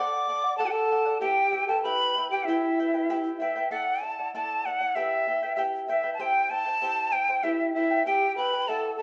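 Andean folk with an earthy, festive mood, this excerpt from a longer piece sets a bright, airy cane quena with vibrato and a soft attack up front on the melody, a breathy, reedy bamboo pan flute carrying a second line that drops out at 3.4 seconds and returns at 7.4 seconds, and a fingerpicked charango whose shimmering double strings fill out the accompaniment, all played live together in one room under a wet studio reverb.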